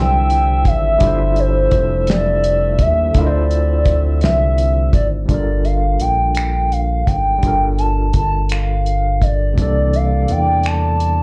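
Yearning and sultry, this slow six-eight R&B excerpt at 56 BPM sets a hollow, woody clarinet-like synth lead with chorus, vibrato and slapback echo over a gritty, barky electric piano shimmering with fast tremolo through a combo amp, a rubbery, bouncy square bass and a cloth-damped, thuddy drum kit of finger snaps, hi-hat, kick and fat snare that enters at 0.3 seconds, while a mellow woodwind section holds chords that drop out at 5.3 seconds and return at 9.6 seconds, all heard as a live gig through a club PA with Dm11, G13sus4, Dm9, Gm7 and C13 harmonies.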